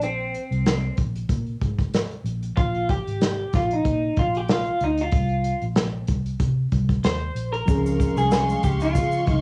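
A lightly swung 94 BPM 4/4 groove from an unplugged drum kit, with a punchy kick, medium-tuned snare and hi-hat played with bundle sticks, sets a hazy, sunny bedroom-pop mood, while a round, foam-muted fingered electric bass with tube saturation sits underneath. Up front, an electric guitar through a small old amp carries a twangy, slightly broken-up solo line with subtle chorus, vibrato and cassette-tape grit, moving over Bb7sus2, Fm11/Ab and Bbsus2 chords. At 7.7 seconds, on a Dbmaj7, a reedy, worn, slightly out-of-tune electric piano and a warbling sawtooth string machine of violas join, along with a grainy egg shaker in the distant background, all in a small-room home cassette sound with light reverb.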